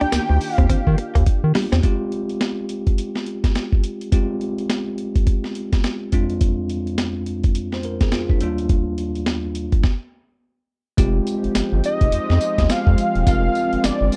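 A gritty, pitched-down boom bap drum kit with a thumpy kick, high-tuned snare, hi-hat and tambourine drives this confident, punchy new jack swing excerpt at 105 BPM in F dorian, with a swung 16th feel, a drum fill and a stop before the round, deep analog bass returns at 11.0 seconds. A bell-like tine electric piano with tube saturation plays throughout over Ebmaj7, Fmadd9 and Fm6 chords, while a swirling, detuned analog pad with phaser and chorus sits in the background. A clean, picked electric guitar riff with analog chorus opens the piece, and a thick, bold unison synth lead with tape echo and vibrato carries the melody at the start and again from 11.9 seconds, all in a dry, close 1970s-style studio sound.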